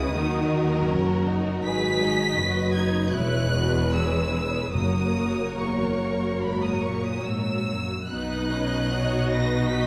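Bathed in a reverberant scoring-stage ambience with lossy compression artefacts, this serene, slow romantic orchestral passage in 4/4 moves with rubato at around 71-82 BPM: a close, smooth violin section sings a high vibrato melody over a distant, lush second violin line, rich violas, focused cellos and a warm, even double bass section, while a dry timpani note sounds in the background from 4.7 to 6.0 s as the harmony arrives on F#.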